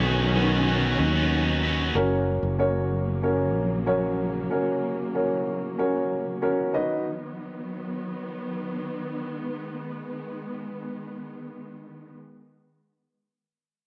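A cranked stack guitar opens this short pop excerpt alongside dark upright piano, a warm studio string section and fretless electric bass, all sounding together from the first moment in B major at 94 BPM in a straight 4/4. The guitar's bright, overdriven, picked riff is gone by 2.0 seconds, while the growly, punchy fretless bass sits up front underneath until about 4.5 seconds. The woody, mellow upright piano carries the accompaniment through the chords B and F#, then drops out at 7.1 seconds, shortly after the harmony returns to B at 6.7 seconds. From there the bowed strings hold sustained chords alone, their vibrato and portamento lending an expressive, smooth-topped sheen until the cut at about 12 seconds. A moderate echo chamber reverb gives the studio ambience some depth, and the overall mood is anthemic.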